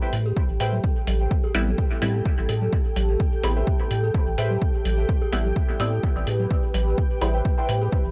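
A punchy, tape-warm analog kick drum sits up front in this meditative, hazy dub techno excerpt at 127 BPM in 4/4 with a light 16th-note swing. It rides on an Am7 chord, alongside a deep, round sub bass built from triangle and square waves, with sidechain pumping. A moody, detuned sawtooth pad holds sustained chords with a slow attack, while warbling, nostalgic lo-fi synth keys play a riff through chorus, phaser, 12-bit sampler grit and dub echo. A bubbling, resonant stepped-filter texture with built-in reverb hovers in the background throughout, and from 1.5 seconds a muted, filter-plucked dub chord stab with a short decay adds phaser and echo. A muffled, pitched-down sampler hi-hat, a jingly acoustic tambourine and overdriven electronic bongos and congas with dub echo fill out the percussion. The recording is dry and gritty, with a hardware character throughout.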